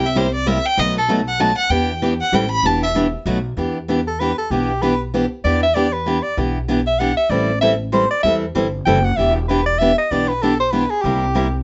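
A bowed violin opens this fiery gypsy-jazz swing excerpt in E minor, singing up front with vibrato, soft attacks and expressive portamento over a picked steel-string acoustic guitar and a pizzicato upright bass. The tempo is a brisk 193 BPM in 3/4 with a swung eighth-note feel, and the chords move through dark minor-seventh and dominant colours. The guitar carries the accompaniment with a crisp, concert-style presence, while the gut-string bass sits lower in the mix, woody and thumpy. The violin's solo ends at 2.9 seconds, and at 4.1 seconds a close-miked soprano saxophone takes over the lead with a bright, vibrato-rich jazz tone. The sound is virtuosic and lively, set in a light reverb with a gently rounded top end.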